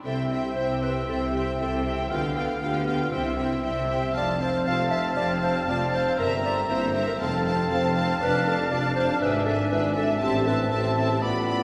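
Magical and a little sneaky, this playful, whimsical film cue moves at 118 BPM in a straight 4/4, opening in C major before turning toward A minor at 8.2 s. A rich, focused violin section carries the melody in a high register, bowed with vibrato, while a second violin section, a pure metal flute, a clear, punchy oboe and a dark clarinet weave second lines around it. Beneath them, a lush viola section with expressive portamento and a mellow bassoon fill in the accompaniment, and a smooth cello section, a double bass section and a tuba anchor the low end. A very quiet French horn section holds mellow sustained chords from 0.6 s to 10.9 s. The full orchestra sits in a wet concert hall reverb heard from further back in the room, and the fragment, cut from a longer piece, ends on an A minor chord.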